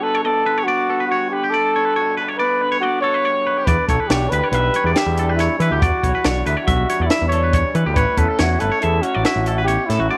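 This short section from a longer piece moves in an odd 5/4 metre at 140 BPM with a straight feel, blending math rock and Midwest emo into something intricate and bright. A breathy, whispered trumpet carries the melody up front from the start, its dark, intimate tone and vibrato set off by a slapback echo. Beneath it, an electric guitar through a small old amp adds a dark, slightly broken-up, lo-fi accompaniment washed in spring reverb, while a twangy, compressed electric guitar picks clean arpeggios high in the mix. At 3.7 seconds a growling, overdriven picked bass and a compact cocktail drum kit join, the kit dry and natural with a high-tuned snare, punchy kick and hi-hat. The harmony shifts from Gmaj9 to Em7 at 3.7 seconds and lands on A13 at 8.0 seconds, all set in a light reverb.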